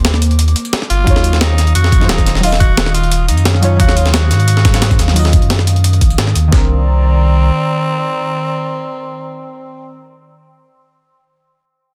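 This soulful, lush liquid drum and bass excerpt at 176 BPM opens in a drop with dark, nasal chord stabs, an airy, breathy pad shimmering with chorus, a thick tube-saturated sub bass up front, and gritty breakbeat hi-hats and snares, one layer high-pass filtered. A raspy tenor saxophone with vibrato and dub echo takes the solo melody at 0.9 seconds, and a thumpy, pitched-up kick-and-snare break joins at 1.1 seconds as the harmony moves from Cm9 to Ebm9. The drums fall away by 6.6 seconds and the bass soon after, leaving the pad, stabs and saxophone in a digital ambience under a dense, heavily limited master.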